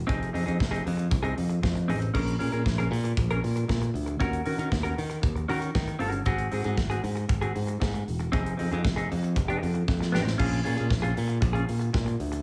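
Disco in Bb minor at 116 BPM, sultry and glamorous, cut from a longer piece: a bright, growly fingered electric bass sits up front over a polished drum kit with a punchy kick, medium-tuned snare, hi-hat and crash cymbal in an airy small room. A dark, clean semi-hollow electric guitar, compressed and scooped with spring reverb, plays a fingered accompaniment through Fm7, Bbm7, Ebm7 and Ab7, all within a studio ambience. A drum fill at 9.9 seconds leads into the closing stretch from 10.4 seconds, landing back on Bbm7.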